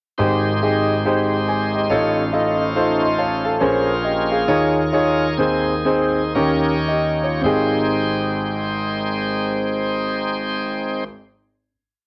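Jubilant and hopeful, this short uptempo gospel piece in Ab major swings in 4/4 between 104 and 140 BPM, with a clear concert grand piano playing close-voiced quarter-note chords and short fills over a deep bass, alongside a bright, shouting tonewheel organ holding sustained chords through a slow rotary speaker and light overdrive. After a breakdown that opens at 0.2 seconds, the piano drops in a fill at 3.0 seconds and the music slows from 3.6 seconds until a final Abmaj7 chord lands at 7.4 seconds. Both up-front parts carry a cassette-tape character, set in a moderate studio reverb on a home recording made on cassette.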